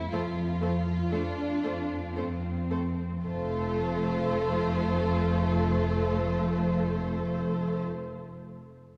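Tender and serene, this short passage cut from a slow romantic movement for string orchestra unfolds in a flexible, rubato pulse that slows down through its first 3.2 seconds. Two violin sections carry the upper voices: one sings the melody with a smooth, even vibrato, while the other holds a lush, expressive second line beneath it. The viola section fills in the accompaniment with an expressive vibrato tone, and the cellos supply a bass line of light vibrato and polished evenness. At the bottom, the double bass section adds a rich, soft-attacked foundation, heard close and full. All five sections play bowed from the opening moments to 7.8 seconds, bathed in the long reverberation of a church or concert hall.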